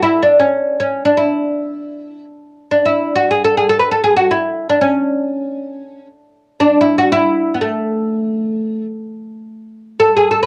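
A lone fretless oud opens this short fragment of Persian modal music, plucked with a plectrum and placed up front in the sound. Its double strings give a woody, deep tone as it moves between A3 and B4 over roughly 10.5 seconds. The mood is passionate and warm, with the oud carrying the whole passage as a solo voice. A cassette tape colour sits on the instrument, and a moderate small-room reverb gives the home recording an intimate, close feel.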